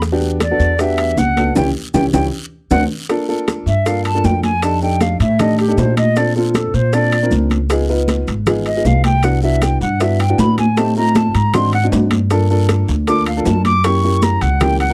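Woody, bright pizzicato upright bass sits up front with bright conga hands, tight high-tuned bongos, ringing timbales, raspy guiro and grainy maracas from the start of this sultry, sophisticated Afro-Cuban jazz excerpt at 156 BPM, as a boxy upright piano enters with short-sustained chords at 0.1 seconds, a band accent arrives at 1.6 seconds with a drum fill following at 1.9 seconds, and an airy, hollow concert flute with vibrato and a crisp attack takes a solo from 3.1 seconds over rich extended harmonies, all captured in a dry, close 1970s-style studio sound.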